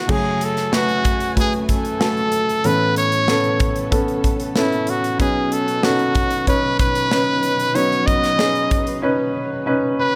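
Warm and hopeful, this short, piano-driven pop excerpt moves at 94 BPM in a straight 4/4, cut from a longer piece. A bright, punchy trumpet carries the melody up front in a pop style with vibrato, while a baby grand piano with a natural, short-sustain tone supplies the accompaniment from the opening moment. A lush, woody string section, bowed with vibrato, holds sustained chords in the background. A polished, airy acoustic drum kit with a punchy kick, medium-tuned snare, hi-hat and crash cymbal drives the groove until 9.0 s, leaving trumpet, piano and strings to finish. The harmony moves through F#madd9, Aadd9 and Badd9, and light reverb with small room ambience surrounds the sound.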